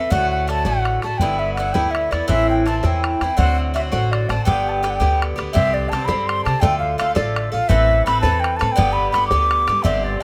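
Bright and rollicking, this short Celtic folk jig moves at 111 BPM in 6/8. It opens in G major and shifts to C major at 5.5 seconds, with chords running from D through G6, Am and D7 before settling on Csus2, Dm, Amadd9 and back to G. A mellow wooden flute carries the melody with a pure, straight tone and crisp attack, over the picked, metallic double strings of an Irish bouzouki, a woody pizzicato upright bass sitting up front, and a tight, damped bodhran heard close and dry. The whole group plays in a small room with a moderate reverb.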